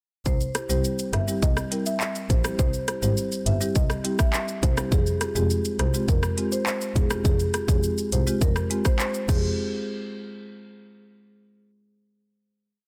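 An up-front, overdriven island pop drum kit with a tight kick, metallic hats and rim clicks drives this bouncy, tough dancehall piece at 103 BPM in F harmonic minor, as a smooth bowed double bass plays a syncopated low line, a rosewood marimba with medium mallets carries a syncopated hook through delay, a mellow padauk marimba with soft mallets pumps off-beat close-voiced chords moving from C to Fmadd9, and very quiet ringing egg shaker and timbale accents sit beneath, all in a dense, heavily limited chorus that ends on a final hit at 9.6 seconds.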